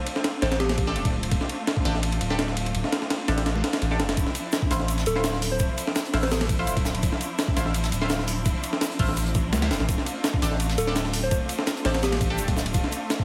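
Drum and bass with a jungle edge, dark and atmospheric, this clip opens on bright, lush bowed strings holding sustained chords in the background with a vintage 12-bit sampler grit, over a gritty, compressed breakbeat kit with a thumpy kick and high-tuned snare placed up front. A deep, round dub sub bass anchors the low end while a nasal, band-passed sawtooth chord stab with phaser and dub echo sits behind, and a gentle FM keys-like lead with chorus, cassette tape colour and dub echo drops in brief phrases around 0.4, 5.1 and 10.8 seconds. From 4.2 seconds an airy, polished jazz kit with hi-hat, shaker and snare joins quietly in the background, and the whole mix carries a heavily compressed radio sound with light small-room reverb.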